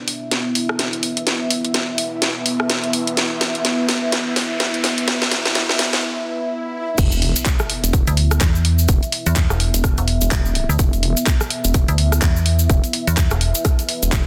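Swaggering and bouncy, this bass house cut from a longer piece opens on a deep, moody pad of detuned sawtooth chords with chorus, reverb and sidechain pumping, while a garage drum kit with cracking snare, bright hats, handclaps, rim clicks and crash builds through a fill and a background riser, swell and sub drop. At 7.0 seconds the drop hits with an impact: a punchy, tape-tinged electronic kick, a grainy cabasa, and a nasal vowel-sweep wobble bass, saturated and pumping, take the floor. At 8.1 seconds a metallic FM bass joins up front, its digital, decaying notes adding clang to the dense, heavily limited mix.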